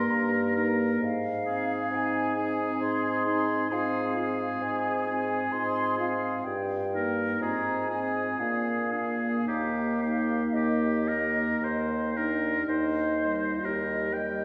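Classical slow romantic movement for wind quintet in Eb major and 3/4, lyrical and serene, moving with rubato at 54-67 BPM through chords such as Eb/G, Fm/Ab and Bb7 before resting on Eb at 9.5 seconds. An airy, mellow silver flute carries the melody with vibrato and a soft, expressive attack, while a clear, up-front oboe with vibrato sings the second line. A present clarinet sits in the background, a dark, punchy French horn fills the middle, and a bassoon with light vibrato anchors the bass from 0.1 seconds, all in a concert hall reverb.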